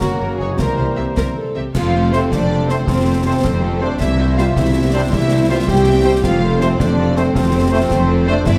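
Heroic adventure film score in 12/8 at 107 BPM in F major, this adventurous excerpt from a longer piece sets a lush, vibrato-rich violin section melody alongside a second violin line, a mellow clarinet, an airy, hollow flute, and a very quiet viola accompaniment with portamento. Distant, roomy French horns and very quiet trombones hold sustained chords while a soft-attack trumpet section adds stabs, a bright, ringing thumb-plucked harp plays arpeggios, and a smooth double bass section with expressive cellos carries the bass. Close, dry concert snare, bass drum and dark clash cymbals drive the music, all set in a recital hall reverb.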